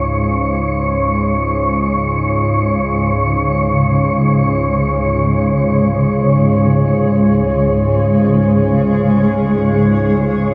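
Dark ambient drone in free time, vast and ominous, cut from a longer piece and opening on a calm, organ-like low drone that warbles with vintage ensemble chorus alongside an airy, wind-like tuned noise texture held high at C#5. At 3.4 seconds a cloudy granular pad enters with blurred, evolving sustained chords, its shimmer reverb shared with the breathy noise layer. All three parts sit up front, yet the whole space is bathed in a wet spring reverb with a long 2.7-second tail.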